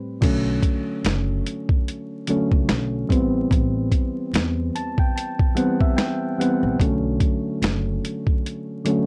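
A dry, gritty recording with vinyl crackle frames this nostalgic, melancholic lo-fi hip hop excerpt at 73 BPM in 4/4, swung on the 16ths, as round, mellow electric-piano-like synth keys with a warbling chorus sway from Bm9 to Am9 and back, adding a fill between 4.3 and 6.8 seconds. Beneath them, a woody, dark pizzicato upright bass plays until 8.0 seconds, while a compressed, up-front boom bap sampler-style kit drives the groove with a thumpy kick, medium-tuned snare, hi-hat, finger snaps and a crash cymbal.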